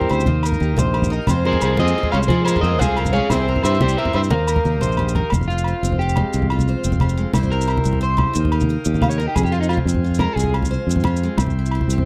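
Danceable and bittersweet, this dry, close 1970s-style highlife guitar band fragment rolls in a straight 12/8, with an up-front, slightly broken-up electric guitar melody carrying slapback echo and a very quiet, bright tenor saxophone with vibrato and scooped notes adding a second line until both drop out at 5.0 seconds. Underneath, a round, punchy fingered bass sits prominently, and a second broken-up electric guitar ripples arpeggios through lush chorus and slapback until 10.5 seconds. A bright picked steel-string acoustic guitar with finger squeak, a reedy vintage combo organ holding sustained chords, thick-skinned low-tuned congas, ringing agogo bells and grainy maracas keep the groove moving, while a clean electric guitar solo takes over from 5.3 seconds.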